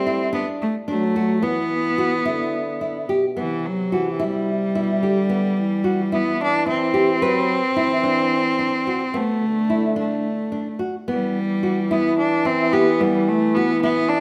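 A single bowed cello sits up front and carries the melody, its tone rich, nasal and boxy, with light vibrato and an intense edge. This restless, shimmering piece of contemporary chamber music moves in an uneven 7/8 with a straight feel, tuned to A4 = 438 Hz. Beneath the cello, a solo French horn plays a second line in a mellow, classical style, with a soft attack and light vibrato that sounds distant and roomy. A fingerpicked nylon-string guitar supplies arpeggios with a full-bodied, deep classical character, sitting between the two in level. The harmony opens on D7sus4 and G6, and a new section begins at 3.4 s, moving through Bm7 to a rootless Cmaj7 at 11.1 s. A moderate recital hall reverb surrounds the trio in this passage taken from a longer work.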